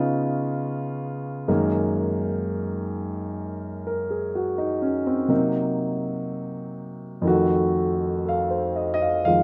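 Smoky and late-night, this short solo jazz excerpt drifts along at a slow 58-63 BPM in 4/4, with a swung eighth-note feel and a loose rubato. A concert grand piano carries it alone from start to finish, its tone open and up front, with a deep bass and long sustain that lets each chord hang in the air. The harmony moves from Db9 to Gb69, then shifts at 5.3 seconds to Cm7b5 before settling on F7b9 at 7.2 seconds, a dusky, unresolved turn that suits the hour. The range stretches from F2 up to Eb6, giving the voicings both weight and shimmer. Light reverb and a rough home demo mix lend the sound an intimate, unpolished closeness, and the passage is cut from a longer piece, ending just after 9 seconds.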